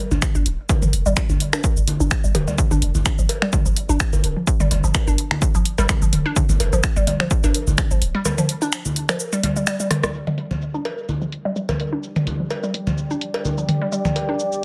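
A hollow, nasal square-wave pluck leads this quirky, sparse minimal techno excerpt, bouncing through a detuned, chorused riff with tape echo, a moving notch and filter sweeps, all pumping against the sidechain. Beneath it sits a deep sine sub bass with a pitch-drop attack, while an overdriven analog kick drives the groove up front until it drops out at 7.9 seconds. A punchy drum machine adds cabasa, finger snaps, hi-hat and rim clicks with a lightly swung feel. Its hats and snare are darkened by low-pass filtering, and the snare is softly clipped. Overdriven electronic congas, cowbell and toms, re-recorded in a large room, sit prominently in the mix, and a drum fill at 9.9 seconds leads into the second section. There, a moody, evolving sawtooth pad enters at 11.6 seconds, mellow and chorused in its own reverb, all within a dense, heavily limited master with light reverb.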